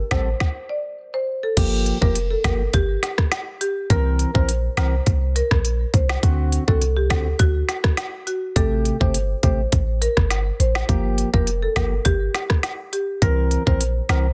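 An up-front organic electronic drum kit with a tight kick, woody snare, crisp hats, rim clicks and crash cymbal leads this sultry, hypnotic dancehall excerpt in G dorian at 103 BPM, alongside a deep, boomy 808-style bass, hollow chorused organ stabs and a warm padauk-bar marimba melody with digital delay, with a stop from 0.4 to 1.6 seconds before the main groove settles over Gm7, C7 and D7 chords.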